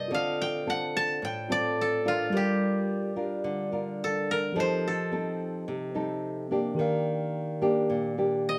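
A dry, woody koto played with fingerpicks carries the melody up front across this intimate, melancholic 8.6-second bossa nova fragment, over a thumb-plucked classical nylon-string guitar and a clean tine electric piano heard through its built-in speakers, moving through Dm7, Gm7, F7 and Ebmaj7 in a small, moderately reverberant room.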